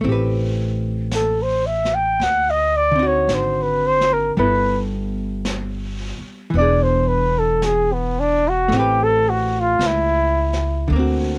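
A slow, swung 4/4 at 55 BPM, kept by a natural-sounding small-room brush kit with brushed snare and hi-hat from the very start, frames this romantic, late-night jazz ballad excerpt, where a woody, growly pizzicato upright bass sits up front beneath a dark, clean, compressed hollow-body archtop guitar, both also playing from the opening moment, accompanying over Am9, D7b9, G69 and E7, and a mellow flugelhorn enters at 1.2 seconds for an up-front solo with light vibrato and scooped notes, its vintage tone, like the guitar and drums, carrying a cassette-tape character within a lightly reverberant home recording.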